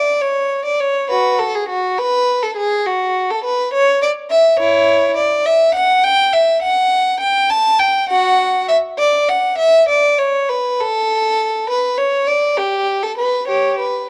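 A dark, warm production sets a single violin up front in a large studio, where a moderate reverb gives the tone a gentle halo. This is a classical, baroque-style suite movement for unaccompanied violin, flowing and radiant in mood, moving in 12/8 with a free, rubato feel. One player bows the violin with a rich, focused sound, coloured throughout by vibrato. The line ranges from E4 up to A5. The violin plays alone for the full 14.1 seconds, a single section cut from a longer piece.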